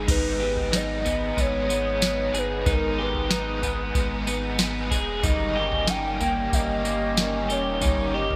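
An up-front, overdriven vintage rhythm box with a deep kick, crisp snare, tambourine, toms, crash and gated reverb drives this hazy, haunting dream pop fragment, where a warbling, nostalgic lead with vibrato enters at 0.1 s over twangy, slightly broken-up guitar arpeggios with delay, a hollow-body overdriven guitar with tremolo, a swirling, nasal phased pad and a thick saturated sub bass. The guitars, pad and lead are bathed in shimmer reverb, and the whole mix carries a bright 1980s-style digital sheen as the harmony moves from G#m to D#7 at 5.2 s.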